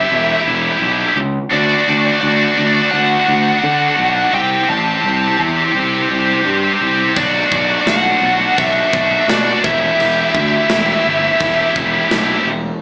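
This heavy metal excerpt opens at once with a scooped, double-tracked high-gain rhythm guitar riffing up front with a slapback echo, while a distorted lead guitar carries the melody above it through a digital delay. A fingered electric bass joins at 0.1 seconds, its fuzz and overdrive giving it a growly edge. The mood is heavy and relentless in a straight 4/4, moving through Em, D, C5 and Bm before coming back to Em. At 7.2 seconds a tight metal drum kit arrives in the background, with a tight kick, a medium-tuned snare and crash cymbals heard in a big-room sound. The performance comes across as a live gig heard through the venue's PA, with club ambience, light reverb and a small-speaker quality.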